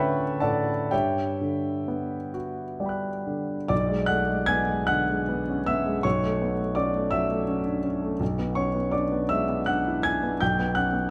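In a free-flowing rubato 6/8, this short fragment of a longer impressionist solo piano piece unfolds with a mysterious, nocturnal air: a warm, intimate concert grand with deep bass and audible action noise sits up front under close, detailed microphones within a moderate concert hall reverb, moving from Dmaj7 and Gmaj7 colours into a shadowier passage that opens on Bm6 at 3.7 seconds and closes on Gmaj7/B at 10.4 seconds.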